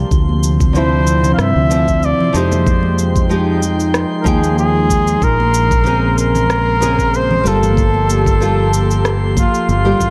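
Sunset chillout in D minor at 94 BPM with a light 16th-note swing, warm and wistful, moving through Dm9, Fm9, Bbm9 and Gm9 in this short cut from a longer piece. A fingerpicked nylon-string guitar with tape echo, an airy, breathy chorused pad, a round, up-front fretless bass and a faint glassy harmonics texture sound from the start. They are joined at 0.1 seconds by a knocking electronic kick and a shaker with rim click, and by background congas at 0.3 seconds, before a clear flugelhorn with vibrato takes the solo melody through digital delay at 0.8 seconds, all set in a dark production with light reverb.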